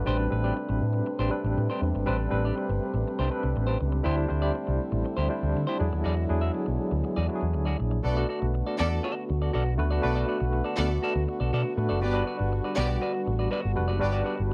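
A dry, close recording with a 1970s studio sound frames this driving, danceable disco cut at 120 BPM in a straight 4/4. Up front, a dark, round picked electric bass runs through an envelope filter and anchors the groove from the start. A barky tine electric piano, lightly overdriven with a medium tremolo through a combo amp, shares the accompaniment with a clean semi-hollow electric guitar, while a mellow French horn section holds smooth, tight sustained chords in the background. The harmony moves from Am11 through D9sus4 and E9 before shifting to Bm7 and Gmaj7 for the second section at 8.0 seconds. There a clear, biting studio string section enters with an even, bowed second line carrying vibrato, finishing at 14.1 seconds, just before this excerpt cuts off at 14.5 seconds.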